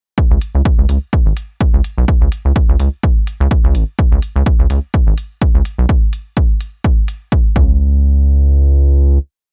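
Cool and clinical, this short minimal techno piece rides a swung sixteenth-note groove, with a punchy, up-front analog kick holding a four-on-the-floor pulse beneath smooth, layered closed hi-hats set low in the mix. A rubbery, hollow square-wave bass with a resonant filter pluck rolls through a bouncy staccato line between G#1 and C#2, colored by tube saturation and sidechain pumping. The dark, dry production ends on a final hit at 7.8 seconds, with the bass sustaining to 9.2 seconds.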